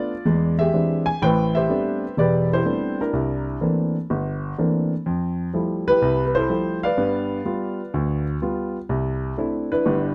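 An intimate, up-front grand piano with audible action noise plays solo jazz on its own, a playful and relaxed swing in a dark production with moderate studio reverb, moving from E7alt through Am11, C13, Fmaj9 and G7 to settle on C69 in this 10.1-second cut from a longer piece.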